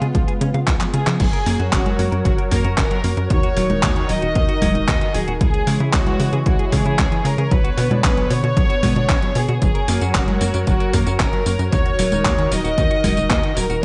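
A straight groove drives this romantic, sunny italo disco clip, cut from a longer piece, with a punchy analog electronic kick entering at 0.1 seconds, an overdriven, sampler-style drum machine of congas, handclaps, hi-hat, tambourine and crash cymbal, and a short drum fill from 0.8 to 1.2 seconds. A tight sawtooth sequencer bass with a fast filter pluck pushes underneath, while a detuned, warbling vintage pad holds smooth sustained chords with chorus and a dark, clean picked electric guitar arpeggiates in the background through tape echo. Floating over it all, a soft-attack studio violin section plays a pure, bowed sul tasto melody with digital delay, and the dry mix carries vinyl crackle and a dulled top end.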